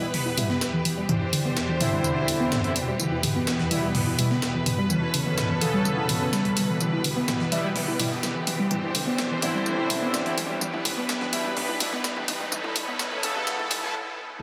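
A straight 4/4 pulse at 126 BPM drives this cinematic, dramatic melodic techno build-up in E minor, where a gritty, high-tuned breakbeat sampler kit of hi-hat, snare and tambourine layers over a produced house kit of hi-hats and toms through a drum fill, while a barely audible round analog bass sits underneath and a swarming, detuned granular drone hangs in the background from 0.3 seconds. A woody, wave-folded pluck spins arpeggios under a filter sweep with chorus and delay, bold nasal synth brass fires stabs, and a lush bowed string section carries sustained chords through Em, Cadd9 and Aadd9, coloured by vintage 12-bit sampler grit. A very quiet riser joins at 7.1 seconds inside a huge ambient reverb and a dense, heavily limited master before everything halts at 13.9 seconds.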